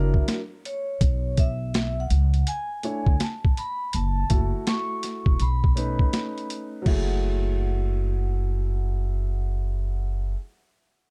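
A gritty, pitched-down boom bap drum kit sits up front with a thumpy kick, high-tuned snare, hi-hat and crash, anchoring this mellow, cool jazz-hop groove at 82 BPM in F# minor with a swung 16th feel before it stops at 7.1 s. A woody pizzicato upright bass also sits up front on the low end, while a dark, smooth baby grand piano with long sustain plays the accompaniment through F#aug7, Bmadd9, F#m7 and B9, arriving on F#m9 at 6.9 s. Above them, a ringing, metallic vibraphone with slow motor vibrato carries the melody in a boxy small room, part of a warm production cut from a longer piece.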